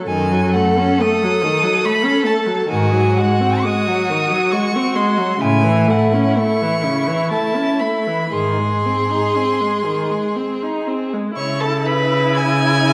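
A second violin and a viola open together, the viola up front with expressive vibrato and portamento, before the first violin's high, smooth, distant melody and the cello's focused bass enter at 0.1 seconds in this melancholic, elegiac slow movement for string quartet in a flexible, rubato triple time. All four players bow with vibrato, the second violin as even and distant as the first, while the cello sits close with a smooth top. A dark production and a wet recital hall reverb surround the music as the harmony moves toward C#m at 11.4 seconds, where this excerpt from a longer piece reaches a new section before it is cut off.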